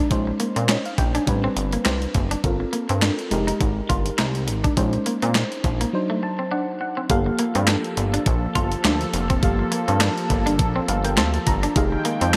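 Slick and danceable, this early-eighties boogie funk moves at 103 BPM with a swung sixteenth feel, cycling through minor-eleventh chords before a brief break from 5.9 s and a settle into G minor at 7.1 s. Up front sit a thumpy, overdriven 12-bit drum machine with handclaps, hi-hat and a medium-tuned snare, and a glossy, nasal chorused synth bass, while a round, dark FM electric piano comps and adds fills and an electric guitar at the edge of break-up plays a twangy riff. At 7.1 s a smooth, detuned analog pad with lush chorus enters, and the bright digital production carries a moderate plate reverb.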